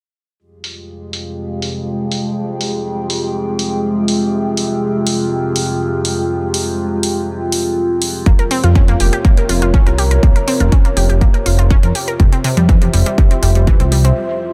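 A light room sound gives this dark, driving melodic techno excerpt at 122 BPM in F harmonic minor a moody depth, opening with an electronic hi-hat that is soon joined by a dark analog pad of sustained chords, a wave-folded drone with moving overtones, chorus and phaser, and a warbling, lo-fi tape-like pad, all of the pads pumping to the sidechain. At 8.3 seconds a punchy, up-front electronic kick drum arrives alongside a fat analog bass with tube saturation and a moving notch, and a lush, bright unison pluck plays arpeggios through 12-bit sampler grit and digital delay. The harmony moves from Fmadd9 to Bbm/F and then C/F before a brief break at 14.2 seconds.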